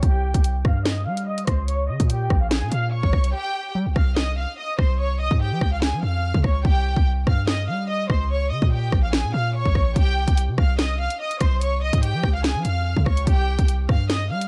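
A lush bowed violin section opens under a filter sweep and vinyl crackle, joined from the start by a punchy, heavy 808-style bass and an up-front electronic drill kit with a hard-clipped kick, sharp snare and bright hi-hats. The track sets a dark, menacing half-time drill groove at 145 BPM in C phrygian. After a brief break at 3.3 seconds the hi-hats drop out until 10.0 seconds, while the strings carry the melody with smooth vibrato over chords moving between Cm, Bbm7 and Db in a dry mix cut from a longer piece.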